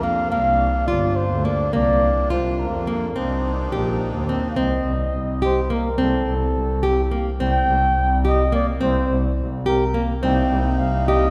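A breathy, mellow flugelhorn plays a jazz-style solo line over fingerpicked, full-bodied nylon-string guitar arpeggios, a focused bowed double bass with vibrato, and sweet, reedy accordion chords that drop away at 4.6 seconds and return at 10.2, all set in a lush concert-hall reverb in this hypnotic, restless contemporary chamber piece in 5/8, cut from a longer work.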